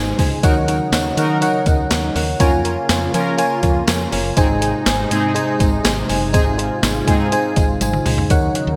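A gritty, thumpy sampler-style drum kit with gated reverb sits up front in this uplifting, romantic 1980s-style pop excerpt at 122 BPM, alongside a dreamy, chorused FM electric piano with a soft pad layer, a smooth analog pad in the background, a round, hollow-toned fretless electric bass, a jingly tambourine, and fat, detuned analog synth brass stabs with chorus and digital delay over Ebm7, Db6/F and Ab, with a drum fill at 7.8 s, all set in a lush hall reverb with bright digital production.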